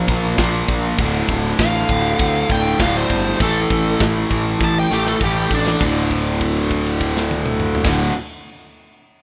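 Dark and aggressive, this heavy metal excerpt drives at 100 BPM in D minor, with two bright, picked, distorted electric guitars playing a riff (one compressed and in the background, the other up front) over a growly, fuzz-soaked picked electric bass and a polished, airy metal drum kit with a tight kick and a medium-tuned snare. A smooth, warm overdriven lead guitar carries the melody from 1.6 to 5.8 seconds, a drum fill arrives at 4.6 seconds, and the harmony moves through Bb5, Dm and A5 before settling on a held D5. The rough home-demo mix has light reverb and small room ambience.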